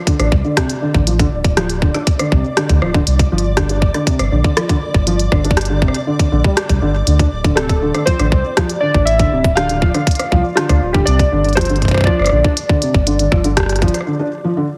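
A felt-muted upright piano, dark and intimate with audible action noise, plays arpeggios through a low-pass filter and digital delay in this melancholic, intricate IDM excerpt in D minor at 120 BPM. A tight, up-front electronic kick and a round, deep sine sub bass anchor the groove. A glitchy kit of clicky hats and rim clicks runs through digital delay, while a grainy, flickering granular texture hovers in the background. The chords move from D7(no3) through Csus2, and at 7.6 seconds, detuned, chorused lo-fi synth keys take up a warbling melody over Dm9 returning to Csus2. A short break follows at 14.1 seconds, and the mix carries light reverb and a heavily compressed radio sound.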